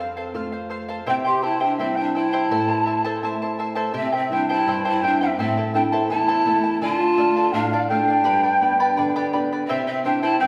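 A large wooden quena carries the melody, its end-blown tone airy and expressive, with a crisp, chiffy attack, vibrato, and a placement that feels set back in the hall. Beneath it, breathy large cane pan pipes play a lower second line with a soft attack and a warm, wavering quality, also heard from a distance. The charango sits up front, fingerpicked on its double strings, some octave-doubled, giving a shimmering accompaniment, while a small-sounding nylon-string guitar adds thumb-plucked bass and harmony, with the occasional finger squeak. This Andean folk excerpt moves in a straight 2/4, balancing a melancholic cast with a festive lilt as the harmony passes through F, C and A minor before a second section from 3.9 s turns toward D minor, G and back to C. A lush recital-hall reverb wraps the ensemble, lending it the spacious resonance of a church or concert hall.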